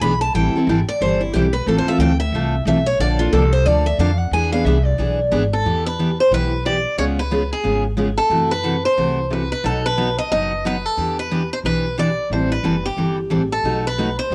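Heard through a home cassette recording with moderate spring reverb and small-room ambience, this bittersweet, swinging excerpt of acoustic string swing opens with a bright, concert-sized steel-string guitar line with audible finger squeak. A full-bodied jumbo steel-string guitar keeps up the accompaniment, and a woody upright bass with gut strings supplies a thumpy pizzicato foundation. The concert guitar drops out at 5.3 s, and at 5.5 s a boxy swing-style guitar with fresh strings takes the melody up front, as the harmony settles into E minor at 5.7 s.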